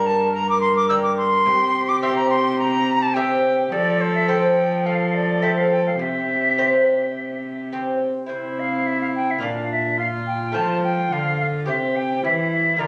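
A straight 4/4 pulse carries this courtly, stately renaissance-style consort dance, cut from a longer piece, where an airy, up-front silver concert flute sings a tongued, expressive melody with vibrato over a rich, distant, reedy viola second line, a delicate fingerpicked lute on doubled gut strings, and a dark, smooth-topped bowed cello bass, all captured on a phone in a stone room with club reverb and compression, moving through Gm, C and F before a new section begins at 8.3 seconds and turns to Bb at 9.4 seconds.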